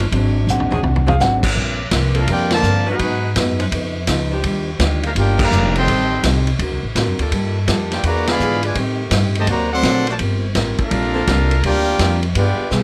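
A close, detailed and nearly dry recording opens with a dark, boxy upright piano taking a short solo over its first 1.3 seconds, action noise audible, while a vintage drum kit with dark cymbals and a punchy kick plays a fill; a woody, thumpy pizzicato upright bass, a fingerpicked steel-string acoustic guitar with finger squeak, and a clear saxophone section holding sustained chords in the background sound throughout. This dramatic, brassy big band swing excerpt in G minor moves at 167 BPM, and at 2.2 seconds a bright, tight trumpet section takes the melody up front over a mellow trombone section's second line, with band accents at 2.5, 5.3 and 8.2 seconds. The harmony is rich with extended chords, closing on Gm11.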